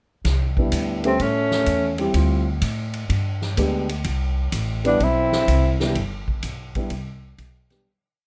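Set in light reverb, this short, swinging small-group jazz piece in C major moves at 126 BPM, with an upright bass walking up front in a woody, thumpy tone while a big-room drum kit plays a ride cymbal pattern over a punchy kick and medium-tuned snare. A dark concert grand piano comps in mellow, syncopated rootless voicings, and a clear trombone harmony line, mostly in thirds, enters at 1.0 seconds just ahead of a breathy tenor saxophone that states a bebop-style theme with scooped notes and vibrato at 1.1 seconds; both return together at 4.9 seconds. The warm, intimate mood carries into a fade-out from 6.0 seconds.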